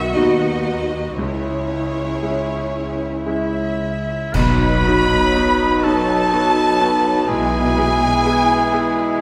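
Moving and sorrowful, this short excerpt from a cinematic film score drifts in a rubato 3/4 at roughly 54-63 BPM, tuned slightly low to A4 = 437 Hz, with harmony moving from B to C#m and later settling on E/B. A lush violin section carries the expressive, vibrato-laden melody, while a second, focused violin line sits in the background. Beneath them, a brilliant concert grand piano with deep bass, a smooth, very quiet viola section, woody cellos and close double basses with portamento fill out the accompaniment and low end. At 3.3 seconds a pure, hollow flute with a soft attack and a vintage-toned solo oboe add second lines. At 4.3 seconds a mellow French horn section enters with sustained chords, and clash cymbals and concert bass drum, dark-toned and dry, mark a brief accent. The cellos and basses fall away at 8.1 seconds, and the whole orchestra sits in a reverberant scoring-stage space.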